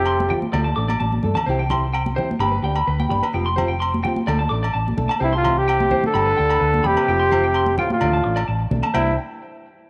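A moderate echo-chamber reverb gives this joyful, danceable highlife guitar band excerpt a roomy glow, moving at 128 BPM in a straight 4/4 in C major. A mellow trumpet with light vibrato carries the melody up front, joined by a clear trombone second line in the background; both sound a brief phrase at the start, drop out, and return together at 5.2 seconds. Throughout, a clean, compressed semi-hollow electric guitar picks high arpeggios through tape echo, while a dark, round, punchy hollow-body bass sits up front. Bright, high-tuned congas played with soft hands and ringing agogo bells, close and dry in the background, fill out the percussion. A small, dark nylon-string guitar fingerpicks accompaniment with audible finger squeak over a cycling Fsus2, Dm, C and G progression.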